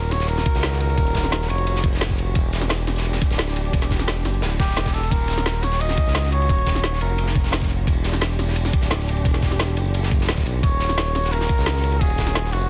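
A dense, heavily limited modern master in a small room gives this dreamy, melancholic slice of liquid drum and bass at 174 BPM a close, compact sound, with the harmony moving between Ebm7 and Em7. A smooth, up-front synth bass blending sawtooth and triangle tones sits low and sustained under the whole 12.7 seconds, while a dark, lush studio string section holds bowed chords with vibrato in the background. The drums stack three layers: an overdriven electronic kick with a knocking punch, a produced kit with a woody snare and bright hats, also overdriven, and a gritty, saturated breakbeat kit with dark ride cymbals, a medium-tuned snare and a rolled-off top, its cymbals, snare and room thinned by high-pass filtering. Over this, a clear, vintage-toned flugelhorn plays a classical-style solo melody with light vibrato and digital delay, arriving in short phrases that begin at 0.0, 4.6 and 10.6 seconds. 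The passage is cut from a longer piece.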